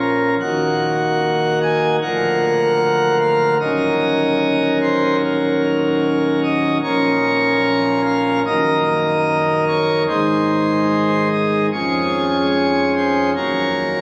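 Solemn and grave, this classical chorale-style piece for solo pipe organ moves at a rubato 74 BPM in 4/4, a fragment cut from a longer work and lasting 14 seconds. The organ's principal chorus sounds full and up front, with a romantic voicing that spans from a deep D1 to Ab5. The harmony opens on Ebm at 0.4 seconds and moves through Bb/D, Ebm7, Bbm, Ebm/Gb, Ab and Db/F before returning to Ebm at 13.4 seconds. A wet cathedral reverb with a 5.0-second decay surrounds the organ, blended with a club reverb and compression. Captured on a phone in the room, the sound carries the long, lingering tail of the space.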